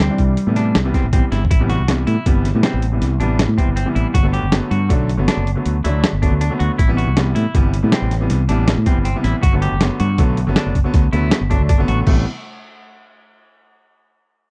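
This progressive instrumental cut, taken from a longer piece, moves in an uneven 7/4 with a straight feel, and its mood is intricate and brooding. A distant, roomy bass clarinet sounds a lone melodic note at the very start, ending by 0.9 seconds. Beneath it, a gritty, pitched-down sampler-style drum kit with a thumpy kick and medium-tuned snare sits up front alongside a round, dark fretless electric bass. A twangy, picked clean electric guitar spins bright arpeggios through spring reverb, while a polished baby grand piano fills in the accompaniment. The harmony alternates between Am7 and Gmaj7, with a drum fill at 1.3 seconds and a break at 11.9 seconds before the chords return to Am7. The recording is dry and close, in the manner of a 1970s studio.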